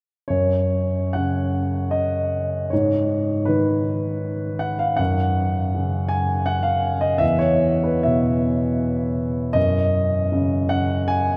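A solo concert grand piano enters at 0.3 s in this short passage cut from a longer impressionist classical piece, its sound warm and open with a deep bass. The mood is hazy and luminous, moving in 3/4 with a free, rubato feel that drifts between roughly 68 and 83 BPM. The harmony glides from F#5 to G#m, back to F#5, then E5, before arriving on F#sus2 near 9.6 s. The piano ranges from E2 up to G#5 and sits up front, its long sustain blooming into a vast, echoing cathedral reverb that lets each chord hang in the air. The passage ends at 11.4 s.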